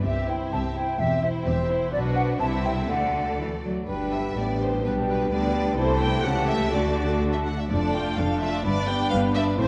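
A hollow, pure silver flute adds a second line above rich, expressive bowed violins carrying the melody in this spirited, graceful classical-period orchestral excerpt, with violas, a distant cello section and a clear double bass section beneath, before a mellow clarinet and a vintage-toned French horn section holding sustained chords join at 3.9 seconds, all bathed in a dark concert-hall reverb.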